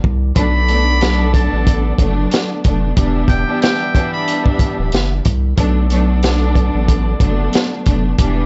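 A buzzy, metal-muted trumpet plays a short jazz-style solo line high in its range with scooped notes and vibrato from 0.4 to 4.4 seconds, treated with plate reverb and tape echo over a gritty boom-bap hip-hop groove at 92 BPM in B minor with a swung feel. A crunchy, saturated, mid-forward breakbeat kit with a tight kick and medium-tuned snare sits up front beside a thick, deep sine sub bass, while a lush, dark bowed string section moves through Bm7 and Em7 with a cassette-tape tint. A tight, punchy vintage horn section adds stabs in the background, and the whole tough, dark, warm mix has its top end rolled off in this short excerpt cut from a longer piece.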